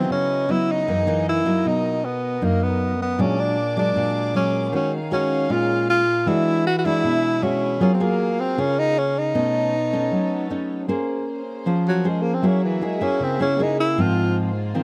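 Bossa nova in an intimate, wistful mood, this short cut from a longer piece features a breathy tenor saxophone up front, carrying the melody with mellow subtone, vibrato and scooped notes in a smooth jazz style before stepping into a solo at 10.9 seconds. A full-bodied nylon-string guitar, fingerpicked with audible finger squeak, shares the foreground and moves through rich chords such as Dbm11, Bb7alt and Gbmaj9. Behind them, a warm symphonic violin section holds soft, floating sustained chords, all captured dry in an open-air setting.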